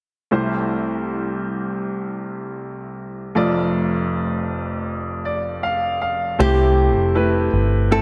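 A hopeful, emotional pop ballad in C major at 79 BPM, this dreamy, reverb-soaked fragment opens on a brilliant, woody upright piano with long sustain, which adds a fill from 4.9 to 6.4 seconds before a small, fingerpicked nylon-string guitar melody with tape echo and a round, foam-muted vintage electric bass sitting up front join at 6.4 seconds.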